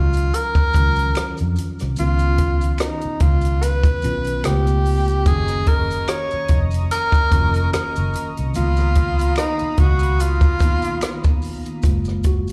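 R&B with a neo-soul lean, this soulful, relaxed passage cut from a longer piece sits on a lightly swung sixteenth-note groove and sounds like a live club set heard through the venue's PA, with small-room ambience and club reverb around it. A breathy tenor saxophone carries the melody up front in a jazz solo style, its vibrato and scooped notes given a slapback echo, and it drops out at 11.4 seconds. Beneath it, a mellow tine electric piano plays clean, direct accompaniment, while a dark, foam-muted fingered electric bass offers a round, amped low end. A compact cocktail drum kit sits close and natural with a punchy kick, hi-hat and rim clicks, joined in the background by maracas, finger snaps and group handclaps. From 5.3 seconds a shimmering, retro pulse-width pad adds bright, chorused sustained chords in the background as the harmony moves through lush ninth, augmented and thirteenth colours before settling on a major ninth.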